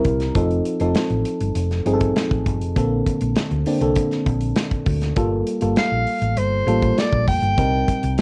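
Slick and urban, this short cut of polished 1980s jazz-funk pop moves at 100 BPM in G minor, with a glassy, bell-like FM electric piano carrying the chords through a subtle chorus and cassette-tape warble over a round, punchy hollow-body bass and a tight, airy studio drum kit of kick, snare and hi-hat, before a bright soprano saxophone enters at 5.8 seconds with vibrato and scooped jazz phrasing, all set in a moderate booth ambience and captured as a home cassette recording.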